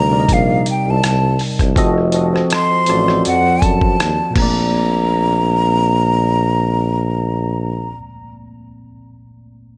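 This R&B and neo-soul excerpt has a sensual, relaxed mood and a gently swung sixteenth-note feel, with a breathy, hollow jazz flute carrying the melody up front over a mellow tuba bass line with light vibrato and soft attack. A worn, slightly out-of-tune tine electric piano with analog chorus and tape echo plays the chords Cm9, F7b9 and Bbmaj9, while a gritty, compressed sampler-style drum kit with a thumpy kick, hi-hat, rim click and crash plays from 0.3 to 4.5 seconds. Flute and tuba stop at 8.0 seconds, leaving the electric piano alone until 9.8 seconds in an echo-heavy mix with light reverb and a faint mains hum.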